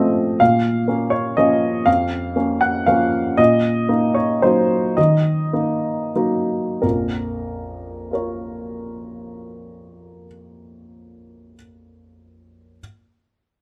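A baby grand piano sits close and up front in a light reverb, its tone intimate and warm, with the soft clatter of the instrument's action plainly audible beneath the notes. This short fragment, lifted from a longer classical work, is a solo piano waltz in triple time, played with a flexible, rubato feel. The mood is wistful and bittersweet, and the piano ranges from deep bass notes up into the upper treble. From 2.6 s the pace gradually slows, easing the opening passage toward its close before a new passage begins at 6.8 s. The harmony stays in a shadowed minor colour throughout, lending the waltz its tender, melancholy cast.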